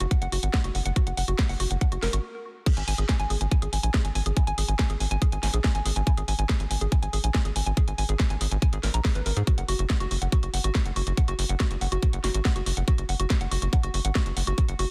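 Psychedelic trance excerpt with a hypnotic, driving feel, where a tight, punchy sawtooth sequencer bass and an up-front electronic kick carry the groove under a garage kit of cracking snare, crash and hi-hat, while a woody, warbling wave-folded pluck riff with chorus, delay and sidechain pumping rides on top, all dry and densely limited, with a stop at 2.2 seconds before the drop lands at 2.7 seconds.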